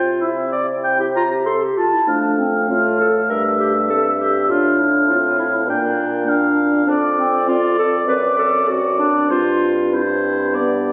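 This is a graceful, cheerful classical-period movement for wind quintet, cut from a longer piece, and all four parts sound together from the opening moment. The mellow oboe sits up front with light vibrato and a distant, roomy quality, carrying the second line high above the ensemble, while the clear, punchy clarinet and the French horn fill in the accompaniment beneath it. The bassoon anchors the bass, also with a touch of vibrato. At 99 BPM in 4/4 with a rubato feel, the music moves quickly in F major before turning toward C major at 6.9 s, passing through chords such as Bb, Dm7/F and D7/F# before settling on C/G at 9.3 s. The sound was caught on a phone in the room, with a wet recital-hall studio reverb that lingers for about 1.4 s.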